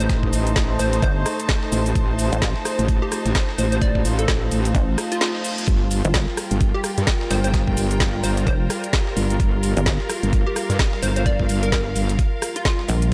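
A distorted, metallic wobble bass anchors this swaggering, gritty bass house excerpt in G minor at 129 BPM with a swung 16th feel, joined from 1.0 seconds by a heavy, pulsing pluck wobble bass, both pumping against a knocking, up-front electronic kick, while a garage kit with woody snare and metallic hats, a very quiet compressed breakbeat kit, a hollow, bouncy square pluck melody with chorus and delay, a sweeping resonant pad, a clear bowed string section and a reverse cymbal at 5.0 seconds move from Adim to Gm7 in light digital ambience.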